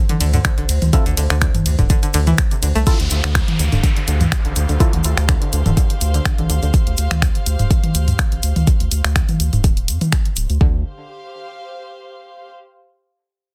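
A faint, bubbling stepped-filter texture opens this hypnotic, quirky minimal techno excerpt at 124 BPM in D minor, soon joined by a twangy, string-like resonator pluck riff with chorus, delay and sidechain pumping, a garage kit of finger snaps, hi-hat, ride cymbal and a softly clipped snare, electronic toms, a grainy tube shaker in the background, a deep, up-front kick, and a round, dark analog bass pumping beneath. A hollow organ stab with chorus and delay appears early on, and at 2.9 seconds a downlifter enters alongside intimate, bowed chamber strings with light vibrato that carry a fade-out and linger to the end at 12.5 seconds, all within a dense, dry, heavily limited mix.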